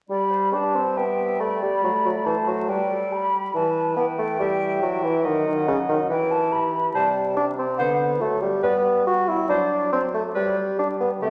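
Graceful and cheerful, this short cut from a longer classical-period movement moves at a quick 140 BPM in 4/4 and G major, yet its pulse breathes with a rubato feel. A mellow, hollow silver concert flute carries a second line with an airy, tongued tone and vibrato, alongside a bright clarinet in the same role, both sounding throughout the roughly 11 seconds. A bassoon sits up front as accompaniment, its soft, round tone touched with light vibrato. Behind them, a dark French horn section holds sustained chords from a distant, roomy position. The harmony moves from G through a D13, E minor and a rootless C#sus4 before settling back toward G by 10.4 seconds. A wet scoring-stage reverb surrounds the ensemble, and a layer of vinyl crackle lends the recording an aged patina.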